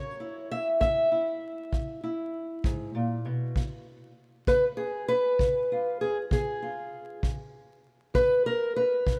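Acoustic country blues in a slow, straight 12/8 at 66 BPM, this short excerpt is soulful and gritty, set in F# mixolydian. A fingerpicked steel-string parlour guitar carries the melody from the start, boxy and up front, ranging from F#2 to E5 over an F#7 chord voiced with the third omitted that moves to C#7 at 3.6 seconds. A kick drum joins at 0.8 seconds, punchy and close, with a brushed studio-room feel. The whole mix is soaked in a long plate reverb with a dreamy haze, and a layer of vinyl crackle adds a dusty, aged surface.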